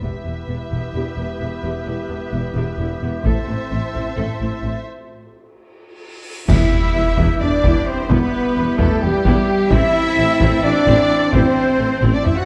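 Epic orchestral film score in E minor, driving relentlessly at 260 BPM in 7/8, where hard-stick taiko and a bright, intense bowed double bass section anchor lush vibrato violins, rich viola and cello sections, mellow French horns and woodwind chords, before a drum fill, a cymbal swell and a huge impact at 6.5 seconds bring in dark trumpet stabs, trombones, a dark tuba, a brief timpani hit and an airy, distant flute line, all within a moderately reverberant scoring-stage sound.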